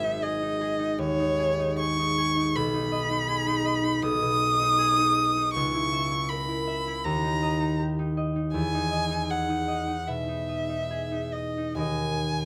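Yearning and melancholic, this short passage cut from a longer piece is a romantic classical duo for violin and harp in G# minor, moving in a flexible rubato around 65-82 BPM. A single bowed violin carries the melody up front and close, its warm tone colored by vibrato and expressive portamento as it sings between C#5 and D#6. Beneath it, a concert harp supplies fingerpicked accompaniment from a deep G#1 up to E5, its mellow, ringing acoustic voice also placed near the listener. Both instruments play throughout the roughly 12.5 seconds, with the harmony passing through G#m/B, A#dim/C#, D# and a tender Emaj7 before settling on D#5 at 11.8 seconds. Light reverb gives the pair a gentle sense of space while keeping the intimacy of the duo intact.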